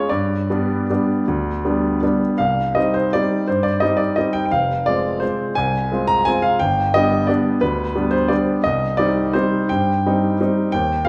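A clear, intimate baby grand piano plays alone in this nostalgic, elegant classical waltz excerpt in C minor, moving in a rubato 3/4 at 152-186 BPM through G, Cm, Fm, G and back to Cm across a range from F1 to Bb5, with a new section arriving at 2.4 s, its long sustain and audible action noise sitting up front within the wet reverb of a recital hall.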